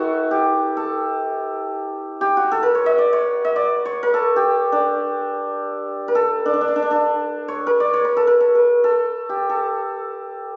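In free time, this festive fragment of Persian modal music features a solo santur playing alone from 0.0 to 10.6 seconds, moving between D4 and Eb5+45c. The hammered strings sound shimmering and ringing, placed up front within the wet reverb of a recital hall. The opening material returns at 7.1 seconds, and the phone-in-the-room capture carries the warm feel of the whole.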